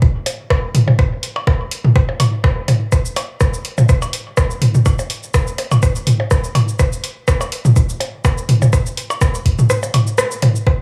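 This sparse, hypnotic techno excerpt rides a steady 4/4 groove with a gentle swing on the sixteenths. An electronic kick drum sits up front, punchy and layered, with a tape-warm body and the air of a large room. A minimal click drum kit, also forward in the mix, scatters percussion blips, rim clicks and toms, each trailed by dub echo. Further back, a house drum kit adds hi-hat, rim click and shaker from 0.3 seconds, its layered, produced sound carrying the same large-room character. The whole is set in light reverb with a small room ambience, and the kick drops out at 9.7 seconds, leaving the percussion to carry the final moment.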